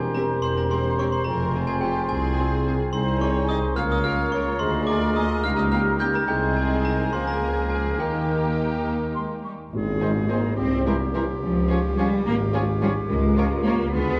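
A ringing, bell-like glockenspiel struck with hard plastic mallets carries the melody from the start of this playful, whimsical film cue in Ab major, a quirky 6/8 at 72 BPM. Beneath it sit a clear clarinet, an airy flute ensemble, a distant oboe, a roomy bassoon, soft-attack French horn chords, a mellow tuba and muted, veiled cello and double bass sections, joined at 0.2 s by lush con sordino violins and a hushed viola section. The glockenspiel stops at 8.8 s, and at 9.7 s a band accent and a very quiet, dry tam-tam open a new section, set in a dark, wet scoring-stage reverb with a mischievous feel.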